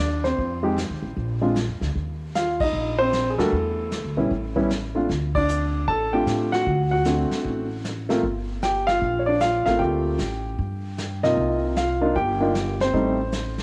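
A home cassette recording with light reverb and small-room ambience gives this short jazz piano trio excerpt an intimate, slightly worn sound. The mood is cool and moody, in G minor at a swung 153 BPM in 4/4, with the grand piano carrying the melody up front, its audible action noise and short sustain heard through the tape. The upright bass is woody and thumpy with gut strings, played pizzicato close to the listener, while the vintage brush drum kit joins at 0.2 seconds with dark cymbals, a medium-tuned snare, a tight kick and a rolled-off top, sitting in a pumping small room. The trio hits accents together at 2.5 and 5.3 seconds as the harmony moves through chords like Eb5, an N.C. passage and a long stretch on Dm7 and Gm11. A new section begins at 11.4 seconds on Cm11, moving to Am7b5 before the cut.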